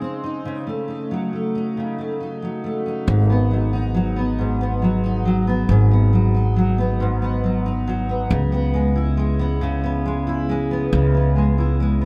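A double-tracked, fingerpicked steel-string acoustic guitar opens this melancholic six-eight pop ballad alone, its dreadnought tone full-bodied and placed up front as it settles on a D#dim/C# chord at 0.5 seconds. The pulse moves slowly at 46 BPM in dotted quarters, with a straight feel and tuning set to A4 = 441 Hz. At 3.1 seconds a pizzicato upright bass enters, woody and thumpy with a dark low end, as the harmony shifts to G#m7. The chords turn to C#m7 at 8.3 seconds, deepening the aching mood before this short excerpt from a longer piece breaks off at 12.1 seconds. A moderate plate reverb with a 2.8-second tail soaks the mix and gives it a dreamy atmosphere.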